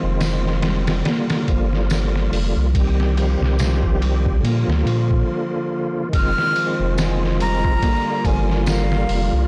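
A smoky, dark trip hop passage at 71 BPM in F dorian opens on a reedy, key-clicking tonewheel organ with fast rotary speaker and tape echo, a ringing, fingerpicked Celtic harp in the background and a round, deep analog bass up front, soon joined by a gritty, pitched-down sampler-style drum kit with a thumpy kick and a soft, band-limited tambourine; after a brief break at 5.3 seconds, a breathy jazz flute with vibrato carries the melody from 6.1 seconds and a moody sawtooth pad with chorus, phaser and 12-bit grit settles underneath from 6.6 seconds, the whole recording dry, blown-out and overdriven beneath a layer of vinyl crackle.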